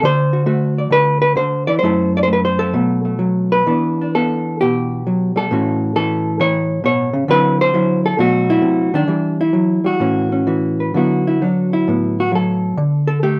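A hollow-body electric jazz guitar plays alone for this 13.4-second excerpt from a longer piece, its clean, dark, fingered tone placed up front and captured with close, detailed microphones and light reverb. The solo jazz playing is swinging and playful at 133 BPM in 4/4 with a rubato feel, moving in D major through chords such as D7, Em7, A69 and B7b9 before settling onto D69 at 11.0 seconds. The guitar spans F#2 to D5, and the tuning sits slightly below standard pitch.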